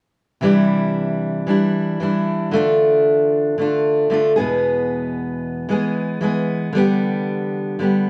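Carefree and heartfelt, this short pop excerpt in C major at 114 BPM features a lone fingerpicked steel-string acoustic guitar, warm and up front in a small room, moving through Cadd9, Dm, E and G/D from 0.4 to 8.1 seconds, all coloured by the warbling pitch drift of worn old cassette tape.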